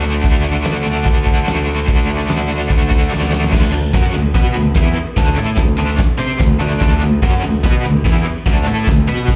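Driving straight 4/4 at 146 BPM, this rowdy, swaggering garage rock excerpt sits in D mixolydian, cut from a longer piece. A crunchy, bright overdriven guitar plays the picked riff from the start, double-tracked and up front, with tremolo and slapback echo on it. Underneath, a growling picked electric bass, direct and amped with overdrive and tube saturation, holds down the low end from D2 to C3. The cloth-damped drum kit enters at 0.2 seconds, thuddy and up front with dark cymbals, a fat snare, a tight kick and a rolled-off top, and a drum fill from 3.1 to 3.5 seconds leads the opening section into the next one. The whole thing sounds like a live gig caught through the venue's PA onto cassette tape, wrapped in small-room club reverb.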